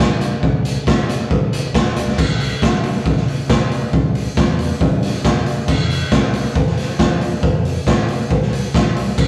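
A raw garage drum kit and a picked electric bass start together at once in this short indie rock excerpt, moving at 137 BPM in a straight 4/4 feel in F major. The mood is wistful yet upbeat. The drums sit up front, punchy and gritty, with crash cymbal, hi-hat, kick and a medium-tuned snare heard in a bright stone room, their sound saturated yet smooth, with a rolled-off top. The picked bass stays in the background with a direct, punchy tone, ranging from A1 to F3. After a brief opening passage, a new section arrives at 2.2 seconds and carries on to the end at 9.3 seconds. Light reverb and a rough rehearsal-room quality shape the whole recording.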